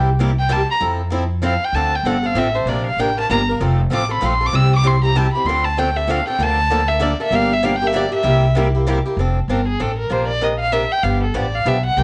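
A swung three-four lilt drives this lively, playful snippet of acoustic jazz manouche, where a bright picked swing-style guitar and a boxy parlour steel-string guitar with finger squeak in the background comp together until the steel-string drops out at 9.0 s, a woody, thumpy gut-string upright bass plays pizzicato up front, and from 0.4 s a bowed, reedy, nasal period-style violin solos with light vibrato and plate reverb, all heard through a moderate studio room and worn, warbling cassette tape with pitch drift and a dulled top end.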